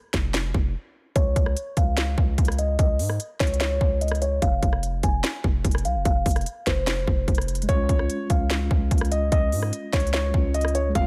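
A hard-hitting 808-style bass and a trap drum kit open this eerie, menacing trap cut at once, taken from a longer piece and set in a half-time feel, with a brief break and a filter sweep that runs until about 7.7 seconds. The drums sit up front, electronic and tape-warm, with a hard-clipped kick, a sharp snare, crisp hi-hats, rim clicks and finger snaps. The 808 is punchy and heavy, a sine tone with a noise layer, a fast attack and a decaying tail. At 1.2 seconds a dark concert grand piano takes the melody between C5 and Ab5, its deep-bodied tone rounded off by a low-pass filter. A mellow tine electric piano joins as accompaniment at 7.6 seconds, clean and heard through built-in speakers, also low-pass filtered. Digital ambience surrounds the mix as the harmony moves from an F5 power chord through Db and F minor before returning to Db.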